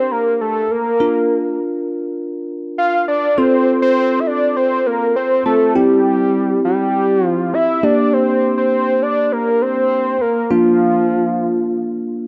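Pop at 101 BPM in a wistful yet bright mood, this short excerpt sets a fat, nasal, detuned analog synth lead with vibrato up front on the melody over a bell-like, clean tine electric piano accompaniment moving through Gm, Bb, F and C, all held in a moderate scoring-stage reverb.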